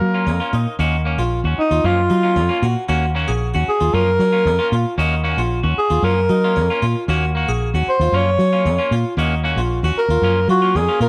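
Light studio reverb frames this funky, defiant afrobeat excerpt, where a bright trumpet and a clear trombone with light vibrato in the background sound only in the opening moments before a breathy, whispered alto saxophone with vibrato takes the intimate, up-front melody at 1.6 s, over a round, dark, foam-muted fingered electric bass, clean, scooped guitar stabs and airy, brilliant harpsichord arpeggios on octave strings.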